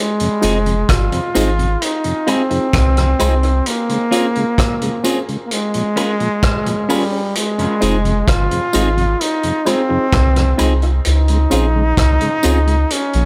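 Dub reggae at a slow 65 BPM in F minor, this hypnotic, meditative piece, cut from a longer work, sits in straight 4/4 under a light reverb. A brilliant, close-miked trombone carries the melody up front from the first moment, its vibrato trailing into dub echo. Beneath it, a deep, round sub bass sits up front with a soft, sustained tone, while a vintage drum kit with a tight kick and rolled-off top plays hi-hat, kick and rim click from 0.2 seconds. A mellow, dark tonewheel organ with chorus vibrato and a slow rotary speaker fills the background, joined by a clean, picked electric guitar and a reedy, worn electric piano that is slightly out of tune and lightly overdriven, its stabs sent through dub echo like the guitar's. Tambourine and woodblock add close, dry accents in the background, also fed into the echo. The harmony moves from Fm7 through Dbmaj7 and Bbm7 before returning to Fm7 and Dbmaj7.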